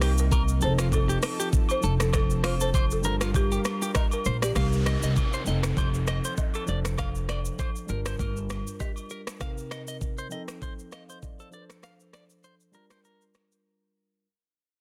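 Knocking, up-front afro-pop drums with metallic hats and a soft-clipped snare drive this mellow, smooth afrobeats excerpt at 99 BPM, where a thumpy, woody upright bass, tine electric piano, picked clean guitar with tape echo, a dry buzzing marimba and a lush, warbling pad pumping in the background open over Cm7 to F7 changes, agogo bells and woodblock add vintage color, and a downlifter marks the fade-out from 4.6 seconds before a brief break at 13.7 seconds.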